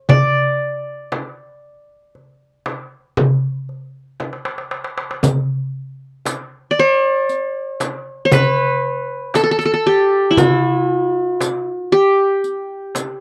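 A mellow, bright-edged qanun opens this festive, stately Arabic maqam ensemble piece, its fingerpicked triple strings carrying the melody up front in a 10/8 metre over a crisp metal-shell darbuka and a small, bright frame drum, both played with soft hands. After a drum fill from 4.2 to 5.2 seconds, a riq with bright jingles joins at 5.2 seconds for the second section. The close, dry 1970s-style studio sound carries a light reverb, and the passage is cut from a longer piece.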